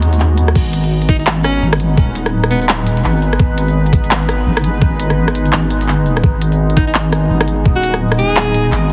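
Half-time drum and bass at 169 BPM in G# minor, this tense, spacious excerpt drops at 0.6 s as a thumpy, pitched-down electronic kick joins crisp-hatted industrial drums with crash, handclaps and rim clicks, over a deep, wobbling, detuned bass and a moody, wave-folded ambient pad that pumps with sidechain and hangs in its own reverb, while a clear alto saxophone with vibrato and scooped notes, roughened by 12-bit sampler grit and trailed by delay, sings brief phrases at 1.1 s and 6.8 s, all squeezed into a heavily compressed, radio-like sound.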